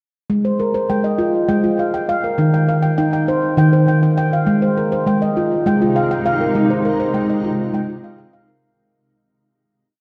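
World meditative music in Ab major, dreamy and gentle, moving in 7/8 at 202 BPM counted in eighths, as a handpan rings out arpeggios in an interlocking ostinato with a dotted bass figure, its dark, nitrided-steel tone struck with the fingertips and trailed by a diffuse ambient delay. At 5.4 seconds a cloudy, blurred granular pad enters with sustained, detuned chords bathed in its own reverb, while the piece fades out from 6.5 seconds over a simple Ab to Eb and back to Ab progression. The whole short piece sits in a vast, echoing cathedral-like space with a long 5.6-second decay and a cassette-tape sheen.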